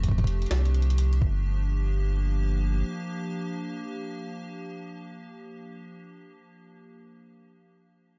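Up front, a rubbery, bouncy square-wave bass with a resonant filter pluck sits low beneath an icy, crystalline glass pad whose slow-attack chords, treated with chorus and built-in reverb, sustain from Fadd9 to Gm7 across the whole 5.9 seconds of this eerie, melancholic IDM fragment in G minor at 127 BPM with a 16th-note swing. A soft, overdriven electronic kick and a gritty, pitched-up jungle sampler-style kit of hi-hat and high-tuned snare play only until about 1.3 seconds, and the bass drops out at 2.8 seconds, leaving the pad alone. The production is dark and dry overall.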